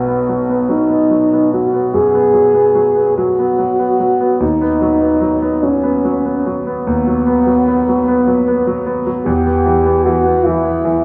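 A French horn and a concert grand piano begin together in this serene, tender romantic classical duo, the horn singing the melody up front with a warm tone and light vibrato while the brilliant, present piano accompanies from its deep bass, in a 12/8 with rubato. The harmony moves from B5 through B/D# at 4.4 seconds to Em at 9.3 seconds. A moderate recital hall reverb surrounds the pair, and a worn, old cassette tape coloring adds warbly pitch drift to this brief fragment of a longer piece.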